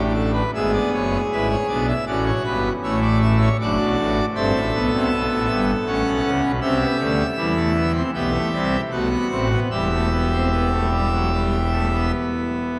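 A pipe organ on full registration, its mixtures bright and brilliant, carries this joyful, stately fragment of a baroque-style four-part fugue, its lines reaching from deep pedal tones at E1 up to F#5 with a majestic, romantic voicing. The organ sits up front yet blooms into a cathedral's long, wet reverb lasting 6.2 seconds, while the uneven beat gives the counterpoint a human sway. After 6.6 seconds the harmony turns toward a minor colour, settling on E minor by 9.7 seconds.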